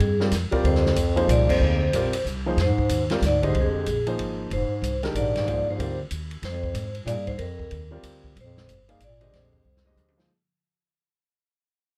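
Hypnotic and cool, this modal jazz waltz at 187 BPM in a swung 3/4 pairs a ringing, vintage-toned vibraphone melody under slow motor vibrato with a mellow, scooped bass clarinet second line, over thumpy pizzicato upright bass, a woody upright piano entering at 0.2 s, and a small-room drum kit with dark cymbals and a boomy kick, as the band hits an accent at 1.5 s, drifts from Bbadd9 to Fm9 and back while fading out from 2.6 s, and closes on a drum fill at 9.6 s in a dry, dark, warm production.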